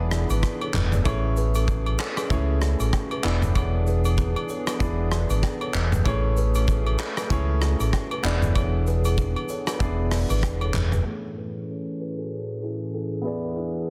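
A loose, swung afrobeats groove at 96 BPM in 4/4 rolls along in A major, its joyful, romantic mood carried by chords that move between E7 and Amaj7. The indie drum kit sits up front with a punchy kick, handclaps, hi-hat, rim click, shaker and toms, its snare roughened by soft clipping and its top rolled off in a pumping studio room, while agogo bells and woodblock add a small-room tube shaker and group handclap colour. A dark, round fingered electric bass anchors the low end with an amped weight, and a woody kalimba riff with a fingertip pluck rings through a tape echo. A vintage grand piano supplies smooth accompaniment, and a hollow, flute-like pad holds slow-attack chords with chorus in the background. At 11.0 seconds the bass and drums drop out, leaving piano, pad and kalimba under a filter sweep until the cut at 13.9 seconds, all within a dense, heavily limited modern master.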